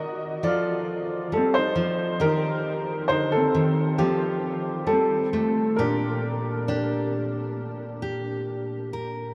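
A clear, woody upright piano carries the melody up front in this short, intimate folk fragment, its hopeful line moving over chords such as F6, Cm/Eb, Fadd9 and Bb6. Beneath it, a full-bodied fingerpicked steel-string jumbo acoustic guitar gives close accompaniment and plays on alone after the piano stops at 8.4 s, until 9.3 s. A huge ambient reverb places the recording in a vast, echoing space.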